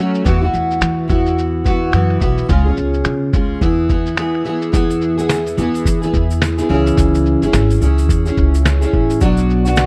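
A fingerpicked, double-tracked steel-string acoustic guitar sits up front in this wistful, tender acoustic pop excerpt with a gentle 16th-note swing, joined by a muffled, pitched-down sampler-style drum kit of thumpy kick, snare, snaps and shaker, a woody pizzicato upright bass, and, from 4.7 seconds, a grainy tube shaker tucked in the background, all captured in a dry, close 1970s-style small-room sound.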